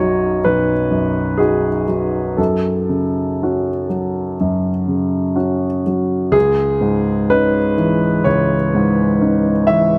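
A close, boxy piano sound with light reverb opens this short cut from a longer neoclassical minimalist piece, the instrument placed up front with its mechanical action audible. A single dark grand piano plays solo throughout the 10 seconds, its mellow, intimate tone and long sustain giving the music a wistful, melancholic cast. The tempo sits around 62 BPM in 4/4, but the playing is rubato, so the pulse breathes freely. In C# minor, the harmony moves from B to F#m at 2.4 seconds, then settles onto a C#madd9 chord as a new section begins at 6.3 seconds. The piano spans a range from B1 up to E5.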